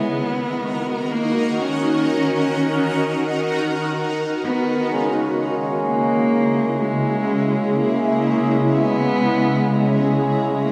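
A dark, bowed cello carries the melody up front from the start, its vibrato and portamento touched by tape echo, over a shimmering, detuned pad of sustained chords colored by chorus and phaser in this spacious, reflective ambient piece at 63 BPM in 3/4, in C# dorian. At 4.9 seconds a reedy, nasal harmonium drone enters as the harmony moves from D#m7 to C#m, followed at 5.2 seconds by very quiet, ringing vibraphone arpeggios with fast motor vibrato and at 6.7 seconds by a faint glassy texture of drifting overtones. A wet plate reverb soaks the dreamy mix of this section cut from a longer piece.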